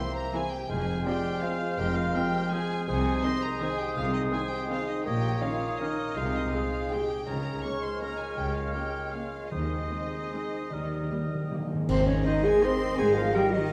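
A dark, reverberant recital-hall sound frames this elegant, sweeping orchestral ballroom waltz, cut from a longer piece and played with rubato in 3/4. A lush, vibrato-rich symphonic violin section carries the melody over a rich chamber violin section, a pure silver flute, a roomy oboe and a mellow clarinet, while a dark bassoon, a distant, very quiet viola section, ringing harp arpeggios and sustained chords from a smooth French horn section fill the middle. Cello and double bass sections enter at 0.7 seconds, and timpani with medium mallets join at 9.5 seconds before playing a fill from 10.7 seconds. Dry clash cymbals with concert bass drum mark a band accent at 11.9 seconds as the music arrives on its new section.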